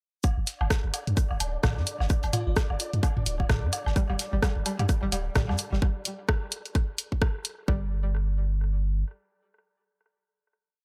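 A tight, tape-warm four-on-the-floor kick sits up front in this hypnotic, sparse minimal techno piece, joined by a punchy, pitch-drop sine sub bass rolling in staccato, programmed garage hats and rim clicks through analog delay, a looped acoustic breakbeat with a rolled-off top, electronic woodblock and tom blips in cross rhythm with tape echo, a twangy string-like resonator pluck cycling a 3-step loop from 4.0 s, a brief bell-like FM electric piano phrase, and a grainy, flickering held high note in the background, all steeped in echo-heavy digital ambience before a final note rings out from 7.7 s.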